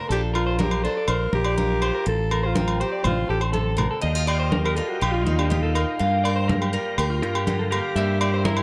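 A picked, woody, boxy acoustic guitar and an electric guitar playing slightly broken-up arpeggios through a small old amp open this joyful, danceable highlife excerpt, joined almost at once by a round, up-front fingered bass, ringing congas and agogo bells. A raspy, growling alto saxophone carries the melody with light vibrato and turns into a solo at 4.0 s, when a thick tonewheel organ enters in the background with a slow rotary speaker, overdrive and chorus vibrato. Plate reverb colours the guitars, saxophone and organ, the electric guitar adds spring reverb, and the whole band sits in a moderate studio room.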